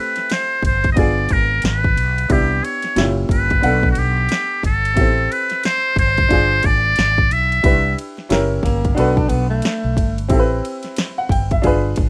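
A dry, rough home-demo sound with vinyl crackle frames this mellow, smoky jazz-hop fragment at 90 BPM in A dorian, swung on the sixteenths over a chord cycle that returns to Am7. A buzzy, whispered trumpet with a metal mute carries the melody up front until 8.0 seconds, over a woody, boxy upright piano, a punchy, layered electronic kit with bright hats, and a round, dark fretless bass coloured by lush chorus. At 8.6 seconds a breathy tenor saxophone slips in briefly for a second line, its subtone and scooped notes touched with vibrato.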